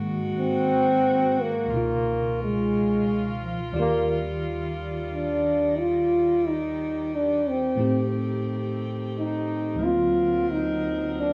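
Recorded live in one room with moderate studio reverb, this intimate, romantic jazz ballad excerpt at 59 BPM has a breathy, whispered trombone carrying the mellow solo melody with light vibrato and a soft attack from 0.4 s. Beneath it, a bright, clean tine electric piano plays through its built-in speakers alongside tight, warm saxophone section chords, as the harmony moves from Ab5 through Db9, Ebmaj9 and Am7b5 to a closing D7alt.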